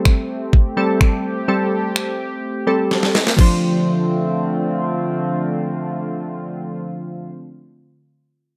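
Glassy, wave-folded digital keys with chorus and a bright, detuned sawtooth pad with sidechain pumping open this energetic, bittersweet dance-pop excerpt in D minor at 126 BPM, with an up-front electronic R&B kit of knocking kick, deep snare, finger snaps and crash joining almost at once. A drum fill from 2.9 seconds leads the harmony from Am7 to Dm7, and the kit drops out at 3.5 seconds. The evolving pad and the fast-attack, decaying keys then carry the section under light reverb.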